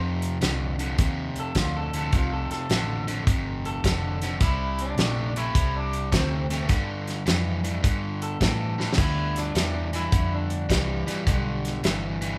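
A soul drum kit sits up front in this laid-back, soulful electric blues shuffle, its fat snare and tight kick ringing in a small room with a mid-forward, rolled-off top, and a drum fill arrives at 8.7 seconds. The tune moves at 105 BPM in 4/4 with a swung eighth-note feel. A bright, crunchy overdriven guitar plays a picked riff in a low register, bathed in spring reverb. A dark, round, foam-muted electric bass with an amped tone holds down the low end. From 1.4 seconds, a twangy, slightly broken-up guitar through a small old amp carries the picked melody with slapback echo. The harmony moves from Fadd9 to Csus2 and on to G7(no3), and the band sounds as if playing live in one room with light reverb, in a passage cut from a longer piece.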